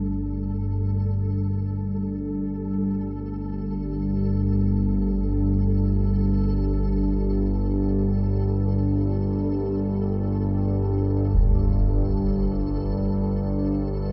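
In free time, this ominous dark ambient drone excerpt sets a warbling, vintage analog drone low and up front beneath a deep, moody pad of sustained chords with chorus, while a grainy, flickering texture fades in softly over the full 14.1 seconds and a single close, dry concert bass drum sounds at 11.3 seconds, all within a vast cathedral reverb and a cassette-tape haze, tuned to A4 = 438 Hz.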